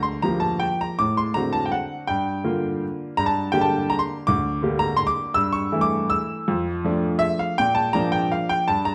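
Playful and elegant, this short classical piano waltz moves in 3/4 at 164 BPM with a rubato feel and uneven beats, passing through chords such as Gm7, D7/A, Dm/F and Bb. A solo baby grand carries the whole 8.9 seconds, ranging from D2 to E6 with a clear, natural tone and short sustain, placed up front. A moderate large-studio reverb and a dark, warm production surround the instrument throughout the cut-down passage.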